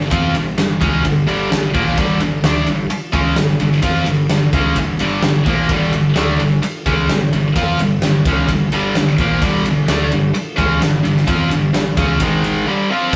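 Driving and aggressive, this hard rock passage is cut from a longer piece and moves in a straight 4/4 feel. A bright, high-gain distorted guitar, double-tracked and picked, sits up front carrying the riff over a G minor harmony, then shifts to Ab5 at 12.2 seconds before landing on G5 at 12.7 seconds. Alongside it, a big acoustic rock drum kit sounds airy and polished, with a fat snare, a punchy kick, crash and ride cymbals, and a big-room presence placed prominently in the mix. A dark, round hollow-body short-scale electric bass, fingered and amped, sits in the background. All three parts play together throughout, wrapped in moderate studio reverb on what feels like a rough rehearsal-room recording.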